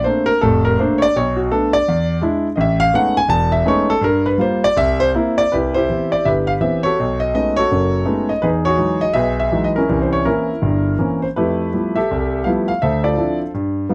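Solo jazz piano at 165 BPM in 4/4, swung yet elastic and rubato, with a warm, sophisticated mood in this short cut from a longer piece. A single concert grand plays alone throughout, reaching from deep bass up to A5 with an intimate, natural tone, up front in a close, dry 1970s-style studio sound with light reverb and the audible noise of its action. Lush extended harmonies pass from Bbmaj9 through Amaj9#11, then shift at 5.5 seconds into a new passage moving through B13, Emaj9 and C7b9 before settling on Dm9.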